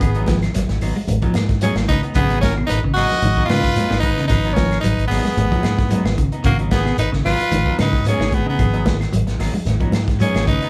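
Funky and hypnotic, this afrobeat passage cut from a longer piece rides a straight 4/4 groove at 112 BPM in G# dorian, resting on a single G#m7 chord for its full 10.7 seconds. A raspy, edgy tenor saxophone carries the melody up front with scooped notes, while a clear trumpet with light vibrato plays a close-miked second line above it. Underneath, a fingered electric bass gives a dark, round, amped foundation, and a crunchy breakbeat kit with a punchy kick, medium-tuned snare and hi-hat sits forward with a saturated, gritty, rolled-off character. In the background, a clean semi-hollow guitar picks arpeggios with a hollow-body glow, and a second guitar through a small old amp adds bright, slightly broken-up stabs with a warbly pitch drift. Very quiet congas with soft hands, a grainy, mellow shekere and woody claves fill out the percussion, all captured as a band playing live in one large studio room with moderate reverb.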